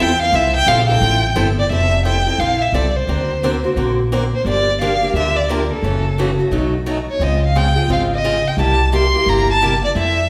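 At a lively 175 BPM with a swung eighth-note feel in 4/4, this playful F major snippet of acoustic string swing rides on woody, growly pizzicato upright bass and a bright, boxy picked steel-string parlour guitar with audible finger squeak. Up front, a single bowed violin carries the melody with vibrato, soft attacks and expressive portamento, its tone warm and close. Chords move from Fmaj7 through Gm7, B7 and Dbmaj9 before landing on C6 at 8.6 seconds, all set in the wet reverb of a recital hall.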